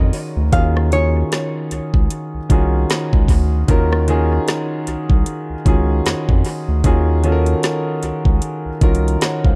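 A slow 76 BPM groove in 4/4 with a swung sixteenth-note feel sets up this sensual, moody slice of contemporary R&B in E-flat dorian, sitting on a single Ebm11 chord. The smooth R&B drum kit enters at 0.1 seconds, its electronic, produced sound built from a knocking kick, woody snare, rim click and metallic hats placed up front. A round analog bass holds the low end with a deep, dark tone, fast attack and long-held notes. A concert grand piano carries the accompaniment, intimate and natural with audible action noise and a long sustain, colored by analog delay. A dark, clean hollow-body jazz guitar plays a brief picked melody that stops at 1.7 seconds, also touched with analog delay. Light reverb and digital ambience give the echo-heavy mix its atmosphere in this fragment cut from a longer piece.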